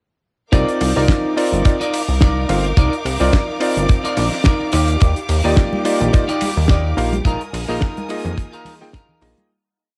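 Nu-disco with a cosmic, sleek mood, this short piece sits in a drop from start to finish on a swung 4/4 groove and fades out over its last three seconds or so. An up-front, tight kick holds a four-on-the-floor pulse beside a damped 70s drum kit whose fat snare and dark cymbals carry a disco backbeat, both softened by small room ambience and cassette tape grit. A glossy, retro synth bass with chorus and a filter pluck plays a syncopated riff up front, while a clean electric guitar picks a funk chord rhythm in close voicing through analog chorus. A clear electric grand piano with a clangy vintage edge adds syncopated chord stabs through sidechain pumping and analog delay, and a bowed studio string section holds a sustained pad with vibrato, also pumping against the kick. Bright, thin-skinned congas slip in quietly in the background at 5.7 seconds, and the harmony moves from Cm11 to Ebmaj9 to Bb7sus4 under a light reverb and a homespun cassette sheen.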